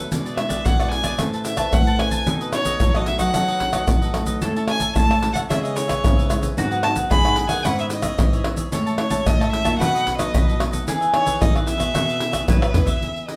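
Samba and choro at 112 BPM in E major, a playful, lively 4/4 excerpt cut from a longer piece, with a band playing live in one room under wet studio reverb. A rich, nasal violin carries the melody up front from 0.4 seconds, bowed by one player with smooth, even vibrato and a boxy tone. Underneath, a bright, crisp picked cavaquinho and a full-bodied fingerpicked nylon-string guitar with audible finger squeak fill out the accompaniment, while a second, smaller nylon-string guitar plays the bass line from the background. Egg shaker, deep surdo, pandeiro and tamborim sit close and up front with hard hands, closing on a drum fill at 12.6 seconds. A round, double-strung mandolin adds a second line from 4.4 seconds as the harmony moves through chords such as Amaj7, C#m7 and B7 before settling on Emaj7.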